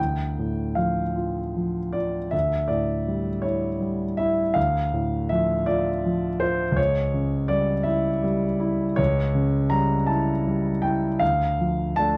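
A romantic classical character piece for solo concert grand piano in D minor, this stormy yet bittersweet excerpt moves at a slow 54 BPM in 6/8, its uneven beats stretched by free rubato. The harmony leans from D minor through A7 over D and a tense C# diminished chord before settling home at 11.2 seconds. The piano sits up front with an intimate, vintage character, deep bass and audible action noise, framed by light reverb in a dark, warm production.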